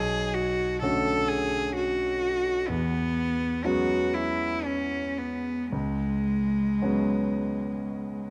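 A moderate concert hall reverb surrounds close, detailed microphones, placing both players up front. This short excerpt, cut from a longer impressionist piece for cello and grand piano, moves in a rubato 3/4 at roughly 54-65 BPM, with a hazy, mysterious mood. A single bowed cello carries the melody throughout the 8.3 seconds, its tone rich, smooth and even, with vibrato, sitting slightly above the accompaniment. The concert grand supports it from beginning to end with a warm, natural sound and deep bass reaching down to B1. The harmony drifts from Bm9 to E69 at 2.7 s and settles on an unresolved C#7sus4 at 5.7 s, leaving the passage suspended.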